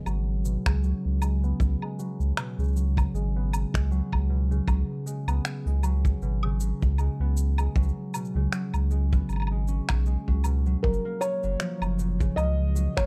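A deep, round sub bass sits up front in this pastoral folktronica excerpt, holding a sustained, sine-like tone beneath a ringing, fingerpicked concert harp whose arpeggios run through a low-pass filter sweep and tape echo for the whole passage. A tape-tinged set of electronic woodblock, cabasa and finger snaps plays from 0.1 seconds, and a saturated, dark kick drum with a rolled-off top enters at 0.7 seconds, with studio reverb on both the kick and this percussion, all in a gently swung 4/4. The harmony rests on a Db7sus4 chord until 10.8 seconds, when it moves to Gbmaj7 and a felt-muted upright piano enters with a soft, intimate melody, its thick felt and audible action noise roughened by vintage 12-bit sampler grit. The overall sound is dry and close, in the manner of a 1970s studio recording, and the mood stays warm until the clip is cut off.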